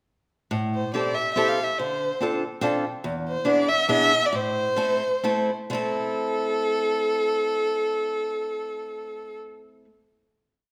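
Nostalgic and bittersweet, this brief musette waltz in 3/4 moves with a rubato feel, slowing from about 3.0 seconds before settling on a final chord at 5.7 seconds. A close, up-front violin carries a motif-based melody in period phrases, bowed with vibrato and portamento, while an old ladder-braced acoustic guitar supplies a boxy, picked backbeat chord rhythm in close voicings, finger squeaks audible. The pair sit in a moderate recital hall reverb, the harmony moving from Am7 through Dm7 and E7 to rest on Am.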